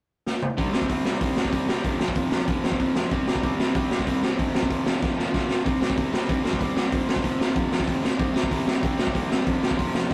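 Punk rock excerpt with an aggressive, angry edge, where a raw garage drum kit with a boomy kick and gritty, saturated tone sits up front, opening with a fill at 0.3 seconds and adding another at 5.0 seconds, while a bright, distorted electric guitar and a crunchy overdriven guitar tucked in the background pick a riff that alternates between C5 and F5 power chords, all in a rough rehearsal-room sound with light reverb and tube saturation.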